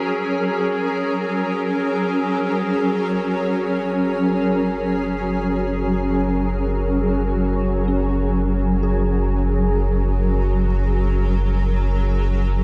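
Ambient excerpt at 63 BPM in Gb major, weightless and peaceful, where an ethereal, shimmering pad holds sustained chords through chorus and its own reverb while a very quiet, pure FM synth bell traces mellow arpeggios with chorus and phaser, and a round, deep analog bass enters up front at 3.1 s, all set in a dark production inside a wet concert hall reverb.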